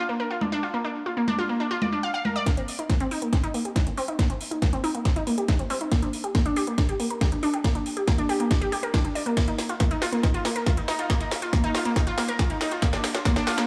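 Emotional and euphoric, this uplifting trance excerpt opens on a bright, detuned unison pluck playing arpeggios, pumped by sidechain and trailed by digital delay, with a high-passed house kit of congas, metallic hats and a cracking snare joining at 0.4 seconds. At 2.5 seconds a punchy, tape-warm electronic kick arrives up front as the passage turns into a build-up with a drum fill and a filter sweep on the arpeggio. A lush hall reverb casts a digital ambience over the mix.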